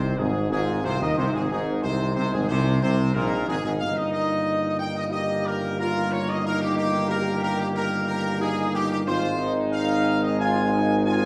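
Set in a wet, resonant recital-hall acoustic, this majestic and solemn classical brass passage, cut from a longer piece, features a warm, punchy trumpet section carrying the melody with light vibrato over sustained chords from a mellow, roomy French horn section and a clear trombone section, while a soft-attacked tuba anchors the bass up front as the harmony moves from Ab to Eb/G at 3.8 seconds and back to Ab at 9.1 seconds.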